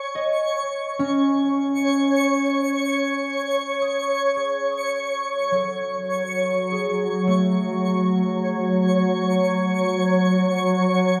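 Ambient, serene and melancholic, this excerpt opens with fingerpicked concert harp arpeggios, ringing and warm with delay, beside a twinkling, sparkling granular texture with an octave-up shimmer sitting up front. The harp fades across the first 5.3 seconds as the chords move from C#sus2 to F#m, and at 6.1 seconds a calm, warbling organ-like drone enters up front, detuned and vintage with ensemble chorus. A long cathedral reverb and a dark production surround the music.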